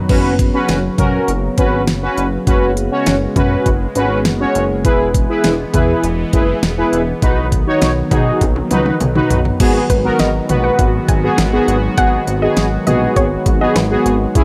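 A bold, brassy analog synth brass sits up front in this cool, nocturnal synth-pop excerpt, its fat, detuned sawtooth tones carrying a filter sweep, chorus and vibrato over a straight 4/4 groove at 101 BPM in G# minor. Beside it, an electronic pop drum kit with a knocking kick, fat snare, crisp hats and tape-like color drives the track, adding cowbell, crash and toms, with a fill arriving at 8.4 seconds. Underneath, a chorused synth bass mixes pulse-wave and sawtooth tones into a glossy, retro low end with a quick filter pluck. A sweeping resonant pad holds sustained chords with a slow attack, long release and evolving, ring-modulated brightness as the harmony moves from F#sus4 through E and B. At 9.6 seconds the music settles onto G#m7, and a soft, round pluck line enters at 9.9 seconds, its decaying notes touched with chorus and slapback echo, all within a light reverb.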